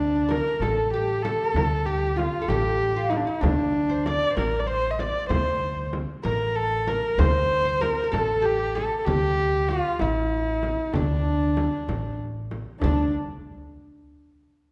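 A rich, bowed kamancheh sings the melody up front with smooth vibrato and portamento, joined from the start by a bright, fretless oud plucked with a plectrum in the background and a dark, thumpy gut-string upright bass played pizzicato. A deep, saturated frame drum struck with soft hands enters at 0.3 seconds, giving this festive, passionate Persian modal ensemble piece its six-eight pulse. The players sit in a wet recital hall reverb, and the passage is cut from a longer performance.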